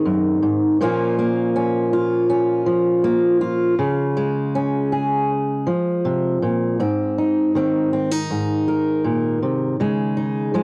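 A straight 4/4 pulse at 80 BPM carries this hopeful, pastoral folk fragment, cut from a longer piece, in which a solo fingerpicked steel-string acoustic guitar sits up front with an auditorium-like body and a cassette-tape tint, moving through Ab, Bbm and Db before a new passage returns to Ab at 6.8 seconds and settles on a Dbsus2 at 9.8 seconds, all within a moderate studio ambience that suits its homemade character.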